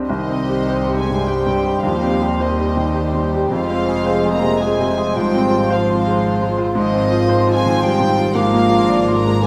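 A clear, intimate baby grand piano opens this lyrical, lush classical passage in a rubato 3/4, joined at once by a floating, sul tasto violin section carrying the melody above it, while a hollow, airy flute, a mellow clarinet and a second violin line in the background carry supporting lines, a dark viola section and a bassoon with light vibrato fill the accompaniment, a distant French horn section holds sustained chords, rich cellos and double basses anchor the bass, and very quiet, round timpani on soft mallets sound from 1.8 to 2.6 seconds, the whole set in a moderate scoring-stage reverb.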